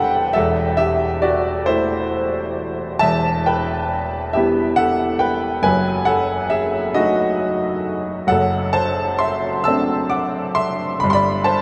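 Tender and serene, this short cut from a longer Romantic nocturne for solo piano moves in a slow, rubato 6/8 at 45 BPM, with a clear, natural baby grand sitting up front across a range from E1 to E6 while a wet, huge reverb of 7.4 seconds places it in a vast, echoing space, as the harmony drifts from Am/E through Em, D#dim/F# and D7/F# to settle on G at 11.0 seconds.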